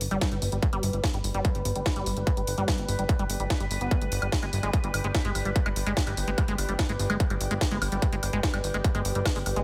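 A distorted, overdriven kick pounds up front in a straight 4/4 beneath a cracking techno kit of hi-hat, snare and woodblock, while a punchy, funky analog bass plucks low, a squelchy, resonant acid riff sweeps through its filter with phaser and delay, an overtone-shifting sawtooth drone holds sustained chords, and a warbling, nostalgic tape-like pad fades in from 0.5 seconds in the background, all in a driving, psychedelic trance excerpt.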